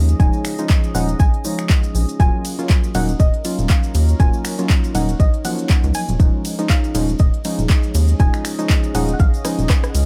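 A deep house groove at 120 BPM in 4/4 rides a 56% swing on the sixteenths, anchored by a deep, layered electronic kick that sits up front. A smooth-hatted drum kit adds finger snaps, handclaps, ride cymbal and rim clicks, while a grainy cabasa with a live-room sound stays in the background. Beneath them, a rubbery, hollow square-wave bass bounces with tube saturation and sidechain pumping, and mellow sawtooth keys play chorused stabs that pump in the same way. A soft, gentle pluck carries the melody high above, bathed in lush chorus and dub echo, as a dark ambient pad with a slow attack and built-in reverb breathes quietly behind everything else. The moody harmony moves from Dbadd9/Eb to Ebm7 and back in this short section tuned to A4 = 439 Hz, and a drum fill closes it from 9.4 seconds.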